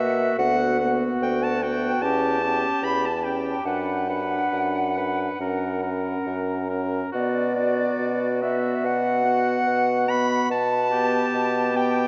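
Drenched in the long, echoing reverb of a vast cathedral with its highs rolled off, this melancholic, elegiac passage from a slow romantic movement for wind quintet moves in a rubato 4/4 at around 68-75 BPM in B minor. A pure, very quiet silver flute carries the melody with vibrato and a soft attack, while the oboe, with light vibrato and a smooth top, sings a second line. A clear clarinet and a warm French horn fill in the accompaniment above a mellow, up-front bassoon bass, as the harmony moves from Bm/D through C#dim/E and F# before settling on Gadd9/B.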